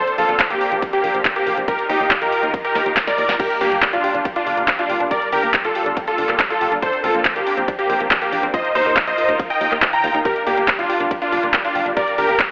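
Uplifting trance at 140 BPM in G minor, bittersweet and euphoric, where an up-front detuned supersaw stab with cassette-tape wear and dub echo carries the melody over a clear, boxy grand piano line, a silky, evolving string pad with ensemble chorus and 12-bit grit, a round, dark FM bass, a punchy house kit with claps and cymbals, and a layered electronic kick, while a nasal analog pluck with phaser and chorus adds arpeggios from 3.4 s after a drum fill, the pumping parts all breathing against the kick in a lush hall with a telephone-like filtered tone over the Bbadd9, Ebsus2 and Gm changes.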